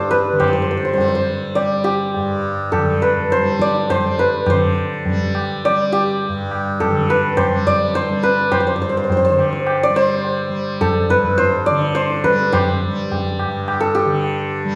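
Devotional and meditative, this Hindustani classical excerpt moves in a seven-beat cycle at 104 BPM in G major, gradually speeding up across its 14.8 seconds. A hammered, shimmering santur carries the melody up front, ringing over a bright, buzzing tanpura drone, while a high-tuned, band-limited tabla with a vintage tone keeps time from 0.1 seconds. A recital-hall reverb gives the whole a resonant, spacious glow, with the music shifting into a new section at 4.5 seconds.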